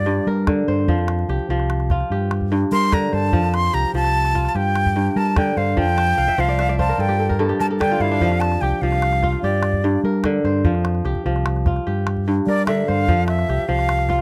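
West African traditional string and xylophone music in a straight 12/8 at 98 BPM in F major, this flowing, warm excerpt cut from a longer piece sets a breathy, vibrato-laden jazz flute melody over ringing, fingerpicked kora arpeggios and a punchy, amped fretless electric bass, with a small calabash joining at 0.5 seconds. The kora takes a crisp fill from 6.0 to 8.2 seconds as the harmony moves between G minor and F. The sound is a dry, close 1970s-style studio recording, with flute, kora and bass all placed up front.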